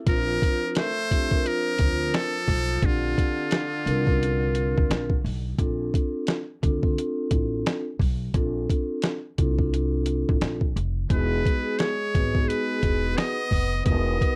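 Relaxed and warm, this jazz-hop excerpt pairs a buzzy metal-muted trumpet melody with a breathy, whispered tenor saxophone line wrapped in tape echo, both playing from 0.1 to about 5.3 seconds and returning at 11.1 seconds, over mellow soft-mallet vibraphone, a woody pizzicato upright bass and an up-front, muffled sampler-style drum kit with a thumpy kick, all in light reverb as the chords move from Bbmaj9 to Emaj9.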